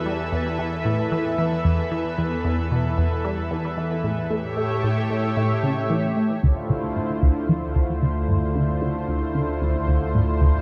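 Cosmic and mysterious, this excerpt of sequencer-driven ambient space music in a straight 4/4 opens with a lush, warbling unison pad holding bright, chorused chords, while a squelchy, ring-modulated blip pluck repeats a riff through phaser and delay. At 6.4 seconds a fat, nasal analog bass enters on a low D as the harmony moves from Esus4 and A7 onto Dm7. A moderate plate reverb gives the echo-heavy mix a spacious glow.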